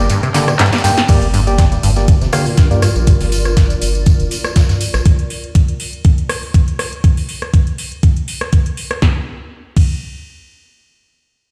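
A thumpy, up-front electronic kick drives this trippy, raw acid house excerpt in G minor at 121 BPM with a light 16th-note swing, arriving at 1.1 s after a brief drop where veiled muted strings and a hollow, nasal organ stab sit over a round, sidechain-pumped analog bass, while a rubbery, resonant acid riff gets a filter sweep, an analog drum machine with punchy snare and metallic hats, a gritty breakbeat kit and a jingly tambourine fill out the groove, a cloudy granular pad drifts in at 1.8 s, and the drum machine and kick carry on alone to 9.9 s, all heard as if blasted through a big system in a bare stone room.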